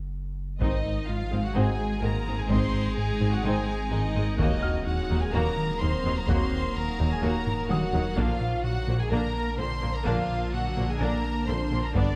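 A deep, saturated sub bass opens this tense, brooding hybrid orchestral and electronic film cue at 127 BPM, joined by a hard-stick taiko fill in the background that returns around 7.5 seconds. At 0.6 seconds the orchestra enters over Ab, Ebm and Bb chords: a lush, vibrato-rich violin section carries the melody above a second, distant violin line and clear violas, while very quiet bowed cellos and double basses, a mellow ring-modulated synth bass riff, and sustained chords from dark, soft-attack French horns and bright, tight trombones fill out the body. A faint vintage grand piano adds texture from 1.6 seconds, and an evolving, detuned wavetable pad with phaser and its own reverb morphs in at 1.9 seconds, all captured with close, detailed microphones and light reverb.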